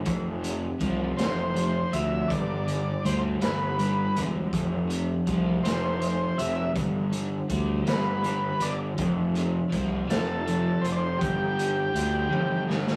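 Hazy and hypnotic, this psychedelic rock excerpt moves at a slow 54 BPM in 6/8 in G mixolydian, with a double-tracked, crunchy overdriven guitar riff swirling through a rotary speaker over a dark, round fuzz bass and a raw garage drum kit whose gritty, saturated sound pumps in a small room with a punchy kick and rolled-off top. From 1.2 seconds a buzzy vintage combo organ carries the melody with light vibrato, while the chords rock between F and G. A drum fill at 12.3 seconds closes out this rough rehearsal-room take, colored by tube saturation and a light room reverb.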